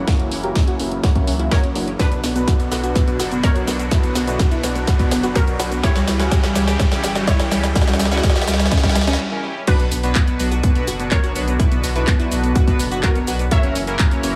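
Progressive house at 125 BPM in B harmonic minor, driving and emotional, cut from a longer piece, where a punchy, up-front electronic kick and a tape-warm house kit with cracking snare, handclaps, hi-hat, shaker and crash drive a build-up of filter-swept glassy wavetable arpeggios, retro chorused polysynth stabs, a deep round analog bass, an evolving supersaw pad, a lush, detuned unison pluck melody with dub echo and a background riser from 0.7 seconds, before a brief break at 9.2 seconds gives way to the drop at 9.7 seconds, with the arpeggios, stabs, bass and pad pumping against the kick in a small, lightly reverberant room.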